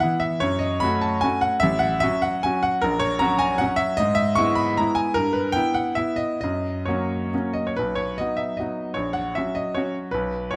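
A clear grand piano opens alone on an F-sharp minor chord, playing a proud, graceful romantic dance in triple time with dotted rhythms. The tempo moves between 126 and 162 BPM with a flexible rubato, giving the classical piece the pliant lilt of a dance cut from a longer work. The harmony drifts through F#m, E/G# and Em/G before settling on F#, and at 7.8 seconds the music turns toward B and F#/A# for a new phrase. The piano spans the keyboard from A1 to C#6 and sits up front, with an intimate, natural tone, long sustain and the noise of its action audible beneath the notes. A wet recital hall reverb surrounds the instrument, and the passage stops at 10.6 seconds.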